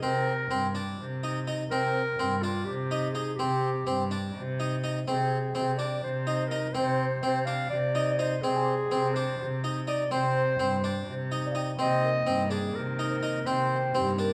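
Set in an uneven 7/8 with a straight feel, this restless, pensive piece of contemporary chamber music is cut from a longer work. A solo clarinet carries the melody in a classical style. An up-front harpsichord with a brilliant, plucked, French-style sound spins arpeggios, while a single bowed cello with a nasal, gut-string tone supplies the bass. At 5.2 seconds a very quiet celesta adds bell-like, delicate texture over the minor-key harmony. A rich, earthy chamber string section slips in behind the others at 11.8 seconds with sustained chords, and a mellow vibraphone played with soft mallets, its fast motor vibrato ringing, joins with a second line at 13.9 seconds, all set in a moderate recital-hall reverb.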